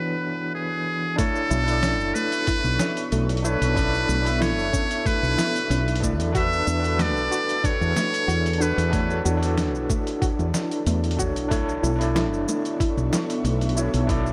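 Smooth and warm, this sunset chillout piece, cut from a longer track, moves at 93 BPM in a straight 4/4 in B minor, with harmony alternating between E9sus4 and Bm11. A trumpet with a metal mute carries the melody up front, buzzy and thin with light vibrato and scooped notes in a jazz style, trailing tape echo until it stops at 9.3 seconds. An overdriven tine electric piano accompanies from the start, barky and gritty through a combo amp, with fast tremolo and tape echo. After a short opening break, the drums arrive at 1.2 seconds: a thumpy electronic kick and a dusty sampler-style kit of hi-hat, shaker and snare, both compressed and overdriven in a small room ambience, soon joined by a growly, hollow-body fretless bass sitting up front. In the background, an ethereal, detuned pad with slow attack and ensemble chorus and a soft, round pluck playing chorused arpeggios fill out the mix under light digital reverb, with a brief touch of very quiet, low-tuned bongos at 12.2 seconds.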